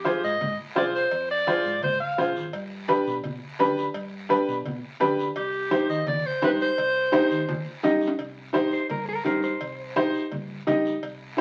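A fiery, danceable cumbia at 170 BPM in C harmonic minor, this short excerpt has the crackle and wet reverb of a very old 78 rpm record, with a clear, woody, slightly detuned upright piano up front over a dark, round hollow-body bass, bright background congas, ringing cowbell and timbales, and a raspy guiro. A breathy, punchy clarinet with light vibrato plays jazz-style solo phrases from 0.0 s, and a drum fill at 7.5 s leads into a shift to C minor. A mellow, clean electric guitar with spring reverb then takes a brief solo from 8.7 s.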